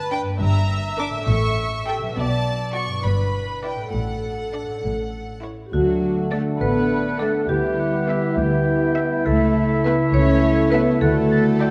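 Quirky and magical, this whimsical 6/8 film cue in D major at 68 BPM opens on soft, sul tasto strings, with two violin sections, violas, cellos and double basses, over ringing fingerpicked harp arpeggios, before a background marimba, clear clarinet, airy flutes, dark bassoon and mellow horn chords join at 5.7 seconds and a vintage-toned oboe adds its line at 6.6 seconds, all bathed in a moderate scoring-stage reverb.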